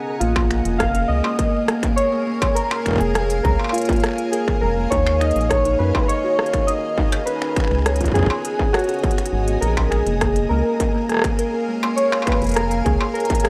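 Melancholic and eerie, this excerpt of IDM moves at 102 BPM in a straight 4/4, set in Bb phrygian with a slightly low tuning of A4 = 439 Hz. Warbling, nostalgic lo-fi synth keys carry the melody from the start, treated with chorus and tape echo, while an icy, crystalline glass pad holds sustained chords, breathing with sidechain pumping and its own built-in reverb. A very quiet, flickering granular texture hovers in the upper register, and from 0.2 seconds a buzzing, woody kalimba adds arpeggios through tape echo as a rubbery, hollow square bass bounces underneath. The industrial drum kit brings crisp hats, cabasa, finger snaps, rim clicks and struck metal in a small room, joined at 0.4 seconds by a distorted, up-front electronic kick. The harmony moves from Bbm7 through Eb7(no3) and Db7sus4 before returning to Bbm7, all wrapped in a light reverb.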